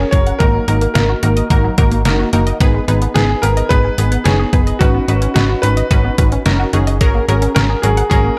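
A straight 4/4 pulse at 109 BPM drives this nocturnal, melancholic synth-pop excerpt in G# minor, cut from a longer piece. An overdriven, detuned 8-bit drum machine sits up front with a thumpy kick, fat snare and hi-hat, its sampler-style sound re-recorded in a small room, and it enters at 0.1 seconds. Beneath it, a slap-like FM bass with a snappy, metallic attack holds low on F#1 to G#1, while a funky polysynth built from sawtooth, pulse and triangle waves, wave-folded and treated with chorus, comps punchy sustained chords. A lush, nasal unison pluck plays bright arpeggios with analog delay further back in the mix, and a clear concert grand piano with natural depth carries the melody, its notes also trailing analog delay. Over a G# pedal, the harmony moves from D#m/G# through G#m and Badd9/G# to F#add9/G#. Light reverb and a digital ambience surround the whole.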